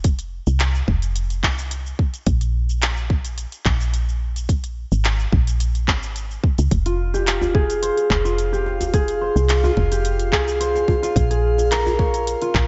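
A ringing, thumb-plucked concert harp comes up front at 6.9 seconds, playing arpeggios through a delay over a woody, round FM bass with sidechain pumping and a tight electronic kick in this earthy, hypnotic stretch of organic downtempo. Tape-warm electronic drums add handclaps, smooth hi-hat and shaker, while a djembe with metal rattles sits in the background and a calm, glassy harmonics texture drifts high above with chorus and its own reverb. Light digital ambience surrounds the mix, and its top end is rolled off.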